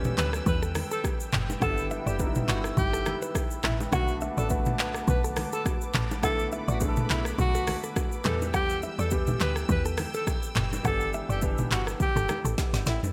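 A mellow, hypnotic afrobeats groove at 104 BPM rides a lightly swung 4/4, driven by an up-front, tape-warm electronic drum kit with deep kick, woody snare, crisp hats, handclaps, rim clicks, shaker and toms, alongside faint bongos and congas and a punchy, percussive log drum bass. Over chords moving from Em through G6 and Bm7, a close-miked, whispered alto saxophone carries the intimate melody with digital delay, while a polished baby grand piano accompanies, a clean, direct guitar riff with spring reverb and delay sits in the background, and a thick, detuned sawtooth pad sustains with chorus, phaser and sidechain pumping. The bright 1980s-style digital production has light reverb, and a drum fill starting at 12.6 seconds closes this excerpt cut from a longer piece.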